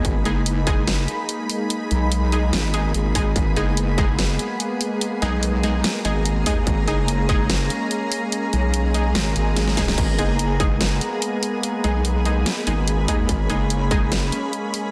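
A dense, heavily limited modern mix sits in a lush digital hall ambience, opening an excerpt of heavy, menacing wobble dubstep with a half-time, lightly swung feel. Up front, a saturated, square-and-sine wobble bass drives the low end with chorus and overdrive, while a distorted, tape-warm electronic kick and a layered dubstep kit with a huge snare, hi-hat and crash cymbal hammer alongside it. A detuned sawtooth supersaw pad holds sustained chords over a G#madd9 harmony, pumping against the sidechain through a low-pass filter. Higher up, a cloudy, evolving granular pad blurs into its own reverb, and from 0.3 seconds bold, punchy orchestra-hit-like synth stabs cut through with a noise layer, reverb and digital delay. A very quiet electronic swell enters at 9.3 seconds, shortly before a drum fill arrives at 9.6 seconds.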